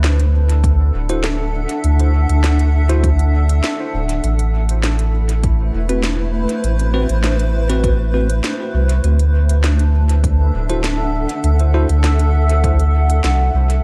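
Lightly reverberant and hazy, this spacious ambient dub excerpt rests on a deep, round sub bass up front beneath a cloudy, granular pad drifting through D9 and Am69 chords, while woody snare and crisp hi-hats carry dub echo, an overdriven electronic kick sits in the background from 0.6 seconds, and bell-like electric piano stabs ring clean and bright with their own dub echo.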